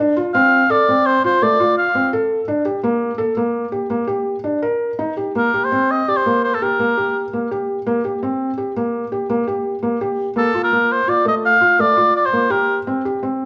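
A moderate recital-hall reverb surrounds this short cut from a longer contemporary instrumental piece, with a felt-muted upright piano and an oboe both placed up front. At 168 BPM in a straight 7/4, the soft, intimate piano plays arpeggios with its action noise audible, while the oboe carries a classical-style solo melody with light vibrato from 0.3 s to 12.8 s. The mood is urgent yet hypnotic, moving from Dm7 and a rootless Eb into a chordless stretch at 5.4 s before reaching Bbmaj7, all tuned to A4 = 444 Hz.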